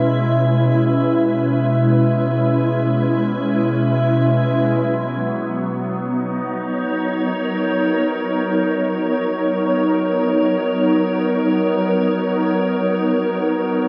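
This ambient excerpt drifts in free time in B major, tuned to A4 = 444 Hz, with a serene, warm mood carried entirely by a solo glassy FM pad that sits up front from 0.0 to 13.9 seconds. The ethereal, mellow pad swells in with a slow attack, sustains across a range from B2 to E5 and fades on a long release, thickened by ensemble chorus, its own built-in reverb and delay. It rests on an E6/B chord before settling onto Bmaj9 at 4.7 seconds, all set in a lush hall reverb with a 2.9-second decay.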